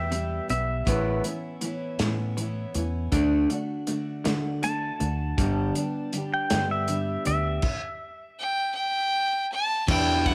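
A pedal steel guitar leads this dusty, wistful folk rock and heartland rock excerpt, taking a clean, compressed solo up front, played with fingerpicks, slide and volume swells. Beneath it, a dark, full-bodied dreadnought acoustic guitar is picked while an electric guitar through a small old amp plays a twangy, slightly broken-up riff. A vintage fingered bass, foam-muted, amped and round, sits with a natural country drum kit that sounds distant and roomy, its punchy kick forward and its medium-tuned snare joined by hi-hat, ride and crash. A clear, biting fiddle enters prominently at 8.4 seconds with light vibrato and an intense yet smooth top, and the pedal steel stops at 9.5 seconds. Set in 6/8 with light reverb and small room ambience, the harmony moves through Em, Aadd9, D and G before the chords drop away.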